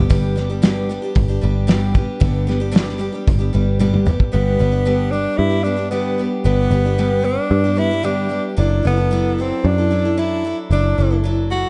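Folk rock with a heartland rock lean at 113 BPM in G major, this jangly, nostalgic excerpt opens on picked steel-string acoustic guitar, round foam-muted electric bass and a cloth-damped, thuddy drum kit with a fat snare and gritty saturation, whose fill at 3.8 seconds closes its part at 4.3 seconds, when a bright, close-miked tenor saxophone takes the melody with vibrato, scooped notes and analog delay over a shift from G to Dadd9/F#, all in a dark production with light small-room reverb.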